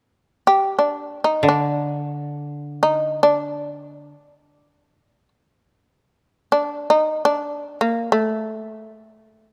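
Austere and calm, this brief free-time excerpt of Japanese chamber music in D miyako bushi sets a powerful, buzzing, plectrum-plucked shamisen melody up front from 0.5 seconds, while a dry, woody koto played with fingerpicks adds a low D3 accompaniment between 1.4 and 4.1 seconds, all captured by close, detailed microphones with light reverb.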